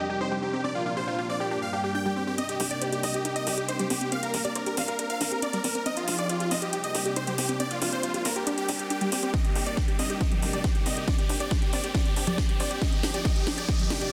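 A straight 4/4 pulse at 138 BPM in C minor drives this bittersweet, emotional uplifting trance passage, cut from a longer piece, where huge detuned supersaw chords carry the melody up front over a thick, warbling unison pad, a round analog pluck spinning filter-swept arpeggios, and a brief catchy plucky lead that sounds only until 2.3 seconds, all pulsing with sidechain pumping. At 2.4 seconds a house kit with cracking snare, metallic hats and congas joins, followed at 2.6 seconds by a tight, nasal sequencer bass in the background, launching a build-up through a Cm7, Bbadd9, Gm and Fm7 cycle. A background riser enters at 7.6 seconds, and a punchy, overdriven electronic kick arrives at 9.3 seconds for a drum fill, all within a moderate digital room reverb and a dense, heavily limited master.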